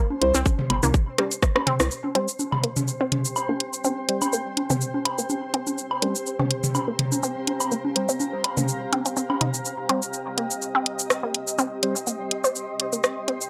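A swung 4/4 groove drives this hypnotic, quirky minimal techno fragment, cut from a longer piece, with a tight, overdriven electronic kick and a hollow, bouncy FM bass both up front in the opening seconds, stopping by 1.9 s after a drum fill and a band accent. An overdriven garage kit of cabasa, hi-hat and rim click runs throughout, joined until 9.5 s by electronic congas, toms and woodblock that sound re-recorded in a large room. A juicy, squelchy blip pluck carries the riff through phaser and analog delay, while a nasal, percussive organ stab with 12-bit sampler grit, subtle chorus and delay moves under a filter sweep until 11.9 s. Behind them, a cloudy, evolving granular pad and a flickering, grainy texture in the background sustain with built-in reverb and sidechain pumping as a build-up arrives from 9.7 s. The recording is dry and gritty, with light reverb and a hardware edge.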